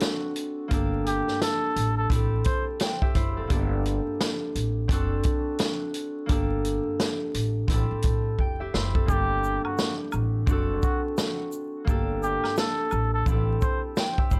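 Dry and dusted with vinyl crackle, this tough, dark boom-bap hip-hop excerpt swings on a punchy, up-front vintage drum kit and a woody, thumpy pizzicato upright bass under ringing, fingerpicked concert harp filtered through cassette tape, while a veiled, cup-muted trumpet with vibrato and scooped notes plays jazz-style phrases from 1.1 seconds and again from 9.1 seconds, when the hi-hats fall silent after a drum fill and a close tube shaker and woodblock join in.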